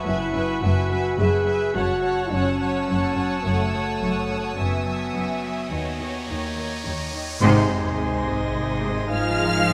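A moderate scoring-stage reverb gives this cinematic orchestral excerpt a roomy, uneasy, mysterious air, moving in an unsettled 5/4. A soft-attack violin section carries the melody with vibrato, sitting in the background alongside a second, focused violin line and a higher lush violin texture that drops out at 7.1 seconds. Below them, a clear, intense viola section accompanies, a smooth cello section plays an even riff, and another cello section joins an expressive double bass section on the bass line. Mellow, distant French horns hold sustained chords, the loudest of the parts, while a glassy harmonics texture with chorus and drifting overtones floats calm, bright chords above. An electronic riser creeps in at 5.0 seconds, and at 7.4 seconds the harmony lands on Ab with a band accent, a sub-drop impact and tight trombones entering on sustained chords in the background.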